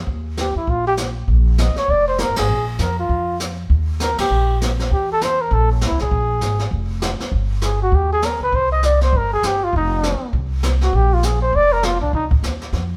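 A breathy, dark-toned trumpet leads this playful, sophisticated excerpt of small-group swing, close and up front with vibrato and scooped notes, entering at 0.4 seconds and carrying the melody in Bb mixolydian at a brisk 199 BPM. Beneath it, a woody pizzicato upright bass with steel strings anchors the low end while a brushed jazz kit with dark cymbals, a medium-tuned snare and a boomy kick keeps the swing moving, punctuated by band accents at 2.3 and 4.2 seconds and a drum fill at 12.7 seconds. The trio plays live together in a moderate stone room whose reverb gives the natural, acoustic sound a sense of space.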